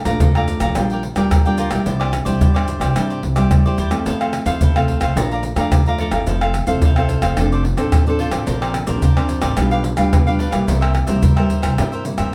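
A straight 4/4 samba-and-choro groove moves along at 109 BPM, driven by a tight surdo, hard-handed pandeiro and tamborim, and maracas, all sitting up front with a small-room feel. Beneath it, a pizzicato upright bass on gut strings gives a dark, woody thump in its low register, while a crisp, bright cavaquinho, picked high above, fills in the harmony. The warm, classical nylon-string guitar is fingerpicked, with audible finger squeak adding a touch of human detail as it shares the accompaniment with the cavaquinho. Every part plays throughout this 12.3-second cut from a longer piece, moving through a sunny progression from Bbmaj7 through Fmaj7 and Dm7/F to a closing G7/B and C7. The mix has a wet studio reverb and is heard from further back in the room, giving the playful mood a sense of space.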